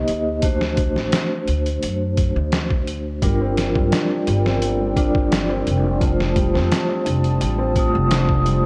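Brooding and smoky, this trip hop excerpt moves at 86 BPM in G minor. Gritty, pitched-down sampler drums with a thumpy kick sit up front beside a woody pizzicato upright bass with tube saturation, while a metallic, ringing vibraphone colours the chords through tremolo and tape echo. At 3.2 seconds a detuned analog pad with chorus and a felt-muted upright piano with audible action noise enter in the background, all wrapped in a small room and the warble of worn cassette tape.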